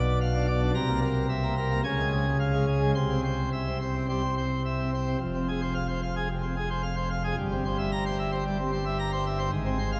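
Classical organ toccata at 111 BPM in a straight 4/4, this dramatic, stormy excerpt features a solo pipe organ on full plenum with mixtures and baroque voicing, its brilliant, chiffy tone set up front and spanning F1 to C6 as chords move from Bdim through C7, Db and C before turning at 5.2 seconds to Fm and C7/G, all bathed in a wet cathedral reverb with a 4.1-second decay.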